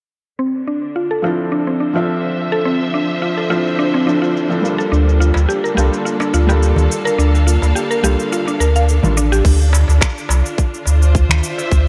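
A woody, round FM synth pluck spins mellow arpeggios through chorus and tape echo over distant bowed strings, a soft felt-muted upright piano, an overdriven organic electronic kit of crash, finger snaps and shaker, a deep sine sub bass from 4.9 seconds, a crisp darbuka in the background and a tight electronic kick from 9.4 seconds in this hypnotic, earthy downtempo excerpt at 106 BPM in D minor, moving from Dm7 to Gm7 and back under light digital reverb.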